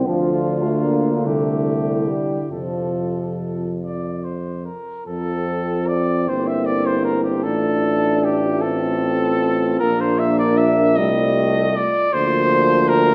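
Lyrical and tender, this hymn-like classical passage for brass band moves in a gentle, flexible 6/8 with a free rubato feel. A warm flugelhorn carries the melody up front, its light vibrato sounding roomy and slightly distant. Beneath it, a dark French horn section holds a smooth-topped second line in the background, while a mellow trombone section, also touched with light vibrato, and a euphonium, set back in the room, fill out the accompaniment. A clear tuba with a vintage character anchors the bass, and all five parts play together from the start to the end of this 13.1-second fragment of a longer piece. The harmony opens on D minor and C before settling on F, and the phrase that begins at 5.1 seconds repeats the opening section, drifting through B-flat and ending on B-flat over D. A moderate scoring-stage reverb with a 2.1-second decay gives the ensemble a spacious, unhurried glow.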